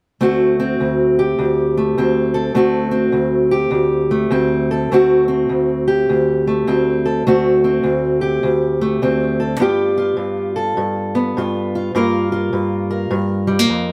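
A fingerpicked steel-string acoustic guitar opens the recording at 0.2 seconds and carries this short blues fragment alone, swinging its eighth notes at 102 BPM in 4/4. The mood is soulful and swaggering, with the guitar ranging from D2 up to Bb4 and sitting up front in a close, detailed recording. Its tone is dark and woody with the boxy, parlour-size character of old strings, and a touch of analog delay trails behind the notes. The harmony rests on D7 before moving to G7 at 9.6 seconds and then Gm7 at 11.9 seconds, ending at 13.9 seconds as a piece lifted from a longer performance. A modest small-room reverb surrounds the instrument, giving it an intimate sense of space.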